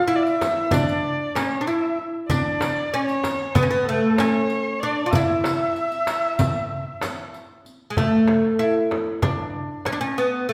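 Passionate and festive, this short cut from a longer Turkish makam ensemble piece in 9/8 sets a woody, double-stringed fretless oud melody up front beside an expressive bowed kamancheh second line with vibrato until 7.3 seconds, while a crisp, saturated metal-shell darbuka, a close, dry frame drum played with soft hands and a riq with bright jingles drive it along, all bathed in the wet reverb of a recital hall.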